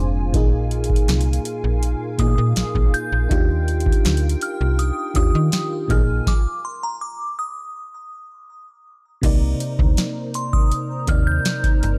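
A straight 4/4 groove from a booming, overdriven analog drum machine with a deep kick, crisp snare and metallic hats, entering at 0.3 seconds, anchors this tender, romantic contemporary R&B excerpt alongside a snappy, up-front FM slap bass, a mellow chorused FM electric piano with a bell-like attack, and a hollow, flute-like pad under ensemble chorus, all three sounding from the very start, while a crystalline, warbling synth bell carries the melody with chorus and digital delay from 2.2 seconds, the dry mix pausing for a stop at 6.3 seconds before moving into a new section at 9.2 seconds.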